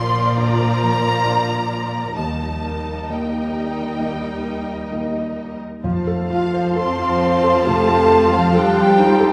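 A free, rubato pulse in 4/4 carries this tender, moving cinematic film score, a short passage cut from a longer orchestral piece. A rich, focused violin section sings the melody high in its range with vibrato, while a second violin section adds a softer, expressive line beneath it. Viola and cello sections fill out the harmony and bass with a lush, bowed ensemble sound, joined by a concert grand piano with deep bass and short sustain, and a ringing, fingerpicked harp playing arpeggios in the background. At 5.8 seconds, as the harmony moves from Eb to F, a close, focused double bass section enters on a single low note. A pure, hollow flute group and a mellow horn section holding sustained chords join at 6.3 seconds, and a distant, roomy clarinet adds a final line at 7.7 seconds. The ensemble sits in a wet hall reverb, with some lossy compression artefacts audible in the recording.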